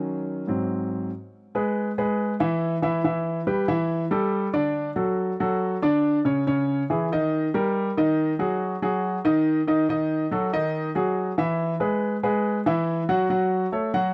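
A dry, close recording in a 1970s studio style frames this sultry, driving jazz excerpt for solo concert grand piano, its deep bass and natural, up-front tone carrying a straight 4/4 feel through chords that move from an opening G#7 through E, Em and Dmaj7 to C#madd9, D#dim and Eadd9 before reaching F#m at 13.3 seconds.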